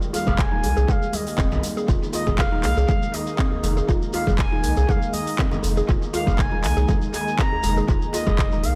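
A detuned sawtooth pad with chorus and sampler grit pumps on a sustained Fm11 chord alongside a grainy shekere from the start of this spiritual, earthy afro house cut in F minor at 120 BPM, soon joined by a smooth, expressive lead with vibrato and analog delay, a woody FM mallet pluck arpeggiating under phaser, an afro-pop kit of handclaps and silky hi-hats, and a cracking djembe tucked in the background, and, from 0.3 seconds, ringing background congas and a round, nasal sine-and-triangle bass beneath a deep, overdriven kick that sits up front in a dry, echo-heavy mix.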